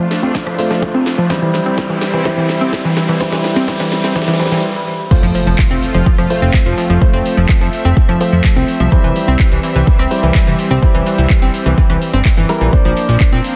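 An up-front, overdriven electronic kick drives this euphoric, hopeful progressive house excerpt at 126 BPM in F major. Around it sit a house kit with a cracking snare and metallic hats heard in a large room, a jingly tambourine, a fat, wave-folded analog bass, round analog pluck arpeggios that get a filter sweep through the build-up, dark baby grand piano stabs with audible action noise, and a lush, detuned supersaw pad, with the pad, pluck, piano and bass all pumping to the sidechain. A background riser climbs over a drum fill, a brief stop follows, and an impact lands as the drop hits at 5.1 seconds. A smooth portamento lead with vibrato slips in at 12.7 seconds over a Bbadd9 chord, all within a dense, heavily limited modern master.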